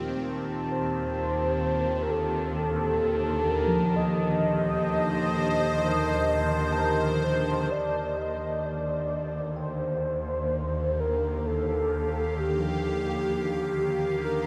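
Weightless and peaceful, this ambient piece is cut from a longer work and floats on a morphing, detuned wavetable pad with phaser and its own reverb, a bell-like tine electric piano spinning arpeggios in the background through phaser and tape echo, and a distant, lush bowed double bass section holding a low Eb. A glassy, ethereal glass harmonica adds a beating texture from 0.2 to 7.7 s, while a velvety, wave-folded synth lead carries the melody up front from 0.7 s, smoothed by chorus, vibrato and tape echo. In the second half, the ambient pad fades in from 7.7 to 14.5 s, and the whole mix sits in a huge, wet reverb.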